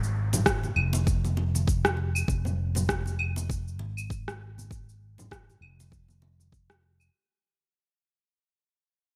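A fretless electric bass, amped and up front between F1 and Ab1, opens this meditative, mystical organic downtempo piece at 99 BPM in F minor pentatonic with a 57% sixteenth-note swing, joined from the start by tape-tinged electronic shaker, rim click and claves and a distant downlifter that stops at 2.3 seconds, while bright, saturated congas played with hard hands enter at 0.3 seconds and a deep, overdriven electronic kick arrives at 0.5 seconds, set in light reverb and a glossy 1980s-style digital sheen as the recording fades out throughout.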